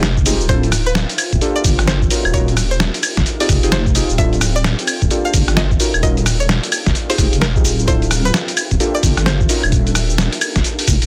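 Skippy and bouncy, this short cut from a longer two-step UK garage track swings at 130 BPM over a cycling Dm9, Gm9, Ebm9, Fm9 progression. A gritty, tape-warm sampler kit of claves, hi-hat, rim click, shaker and snare sits up front beside a thumpy, pitched-down electronic kick, while a deep, saturated wobble bass rolls underneath and mellow, nasal chord stabs soaked in chorus and delay run until 9.6 seconds. A twangy, string-like resonator pluck with dub echo carries the melody from 0.5 seconds, an ethereal pad enters very quietly at 1.1 seconds, and a blurred granular cloud pad pumps with sidechain in the background of a dense, heavily limited master.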